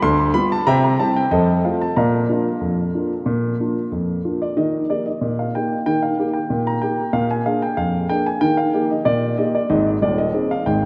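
Lively and cheerful, this short ragtime excerpt in a straight 2/4 features a solo grand piano, dark and mellow and placed up front, with a diffuse ambient delay on the keys, all set in a dreamy mix soaked in a long plate reverb, with the harmony moving to a new section at 4.6 seconds.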